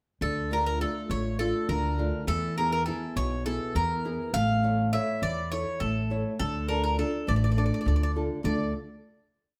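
At 0.2 seconds a Greek bouzouki band starts together: bouzouki, nylon-string guitar and upright bass, playing a brooding, bittersweet folk piece in D harmonic minor. The pulse is a brisk 204 BPM counted in eighths, grouped in a straight 7/8. Up front, the picked bouzouki carries a modal melody full of ornaments, its double strings ringing metallic with some octave-doubled courses. Beneath it, the small-sounding nylon-string guitar is fingerpicked, alternating bass notes and chord figures in an oompah accompaniment. The woody, pizzicato upright bass also sits forward, marking root and fifth on the main beats as the harmony moves from Dm to E, then A and back to Dm. The three play live in a stone room with moderate reverb, and after one pass the piece settles onto a final chord at 8.4 seconds.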